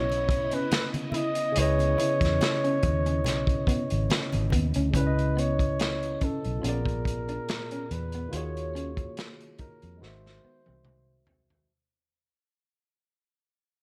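A breathy flugelhorn sings a mellow, scooped jazz melody with light vibrato over a sultry, late-night neo-soul groove in C# minor at 71 BPM, its 16ths swung. Beneath it, a barky tine electric piano comps brightly through a combo amp, while a slightly broken-up electric guitar through a small old amp plays a picked, compressed second line in the background. A dark, foam-muted fingered bass holds down the low end under a gritty, saturated breakbeat kit that sits up front with a tight kick and rolled-off top. Low-tuned, damped congas and a very quiet swirling, phased string machine colour the opening. The congas drop out at about 4.7 seconds, and the strings stop at 4.9 seconds, when the fade-out begins. The chords move from C#m9 through A#7b9 and D#m11 to G#7b13, and a drum fill from 10.0 seconds closes this excerpt cut from a longer piece, all set in a small room ambience.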